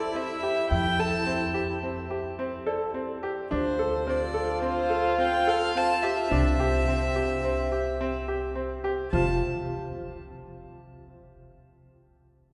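Bathed in a cathedral's long, wet reverb and rounded off in the highs, this hopeful, shimmering fragment of contemporary chamber music in 5/4 sets a floating, sul tasto solo violin melody up front over a close-miked French horn second line, open concert grand piano arpeggios and a woody, thumpy pizzicato upright bass, while a delicate, bell-like celesta joins in the background at 2.7 s and rings on alone after the others stop at 9.4 s.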